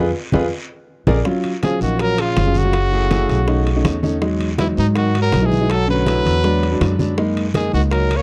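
A clear, punchy trumpet with light vibrato and tape echo carries the melody from 1.6 seconds over a veiled, cup-muted trombone line in this sultry, fiery Afro-Cuban jazz excerpt at 162 BPM, after a short opening piano solo with a band accent and drum fill, while woody pizzicato upright bass, a smooth concert grand with audible action noise, and background bongos, low-tuned congas, ringing timbales and raspy guiro drive the groove in a dry, close 1970s-style studio sound.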